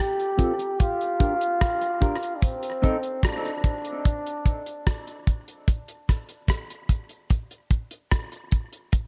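A bright, roomy solo trombone and a damped, dry 70s drum kit of hi-hat, tight kick and rim click open this meditative, spacious dub reggae fragment at 74 BPM in straight 4/4. A clean, picked electric guitar joins briefly at 0.4 seconds, and both it and the trombone are low-pass filtered and trailed by tape echo as the harmony moves from Csus4 through Bb6 to Cm69. A break begins at 2.4 seconds, and once the trombone stops at 5.3 seconds the mid-forward, rolled-off drums carry on alone in light reverb.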